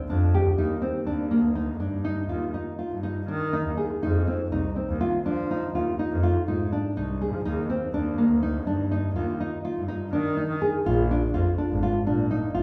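A dark, woody nylon-string guitar opens with thumb-plucked arpeggios, joined almost at once by a single bowed double bass with a clear, smooth top and light vibrato, in a hypnotic, pensive fragment of contemporary chamber music in 7/4 that moves through Ebmaj7, F7 and Bb7 harmonies, heard from further back in a reverberant recital hall.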